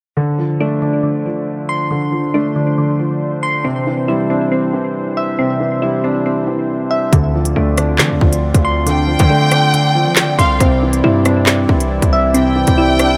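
This menacing drill track in D minor at 138 BPM with a half-time feel opens at 0.2 s with a dark, mellow concert grand piano, a detuned, warbling analog pad in the background, and round, airy electric-piano-like synth keys up front playing arpeggios through chorus, phaser and tape echo over Dm7 and Cadd9, before a drill drum kit with a hard-clipped kick, woody snare and crisp hats and a saturated, aggressive 808-style bass arrive at 7.1 s, joined at 8.9 s by a lush, bowed studio violin section with vibrato and tape echo as a second line, set in light reverb and digital ambience.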